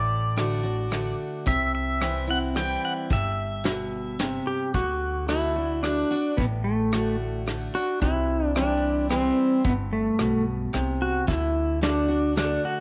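Easygoing and down-home, this honky-tonk and classic country tune moves at 110 BPM in 3/4 in D mixolydian, cut from a longer piece, with a bright, twangy pedal steel guitar opening with a high fingerpicked line through the first 4.4 seconds before a second pedal steel takes the melody up front at 4.5 seconds, both clean and compressed with volume swells and slide. Underneath, a full-bodied jumbo acoustic guitar picks out the accompaniment, a woody pizzicato upright bass holds the low end, and a soft brush kit with punchy kick, rim click, snare and hi-hat enters at 0.4 seconds. The chords sway between D and C, and moderate spring reverb with small room ambience surrounds the recording.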